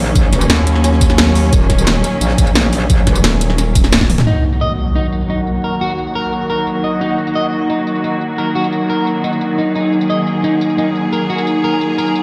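This excerpt of dark, futuristic technical drum and bass opens at 175 BPM in Eb minor with a clear studio string section holding sustained Ebm chords under sidechain pumping and a low-pass filter. A metallic, wobbling bass with chorus and tube saturation hits hard alongside it, quickly joined at 0.5 s by a thick, growling FM bass as the drop lands. The drums stack an electronic kick with a knocking punch, an up-front kit with a cracking snare and metallic hats, and a very quiet, gritty, pitched-up jungle sampler-style kit. A drum fill at 4.0 s leads into an electronic impact at 4.3 s, where a slightly broken-up electric guitar begins dark arpeggios through digital delay and sidechain pumping while a filter sweep moves across the strings. From 6.0 s a deep, moody, detuned sawtooth pad with chorus and slow attack fills out the texture, and the whole track sits in a lush hall reverb that sounds like a big system playing in a bare room.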